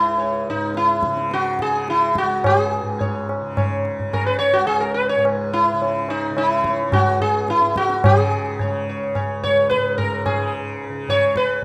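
Meditative and longing, this short cut from a longer Hindustani classical piece in raga kafi on C# moves in 5/4 at about 107 BPM and speeds up throughout, with an up-front, plectrum-plucked sitar singing a round, buzzing melody over shimmering sympathetic strings, a bright, softly plucked tanpura drone sitting low beneath it, and low-tuned, ringing tabla entering at 0.2 seconds, all set in light reverb and small room ambience with a rough home-demo feel.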